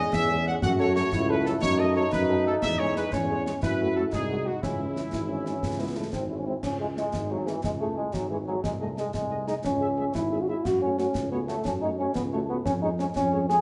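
A stern, martial military-style march for wind band in 6/8, cut from a longer piece, with a clear, lightly vibratoed trumpet section carrying the melody over an up-front but roomy euphonium second line, mellow French horns in the background, a warm, present tuba bass, very quiet dark trombone chords that drop out at 6.5 seconds, and concert snare, bass drum and bright clash cymbals, all set in a wet large-studio reverb.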